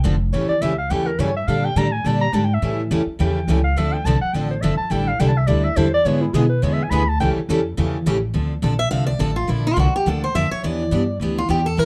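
A mellow, forceful clarinet solos in jazz style with light vibrato over two picked steel-string acoustic guitars, one a full-bodied jumbo and the other a boxy parlour, and a woody, thumpy gut-string upright bass, in this bittersweet, virtuosic jazz manouche swing excerpt in D minor at 210 BPM. The clarinet drops out at 7.3 seconds and the parlour guitar at 8.2 seconds, before a bright, fresh-stringed swing-style guitar takes the melody from 8.8 seconds over chords moving from Dm7 to Bbmaj7 and Em7. A small room adds moderate reverb to a dark, warm production.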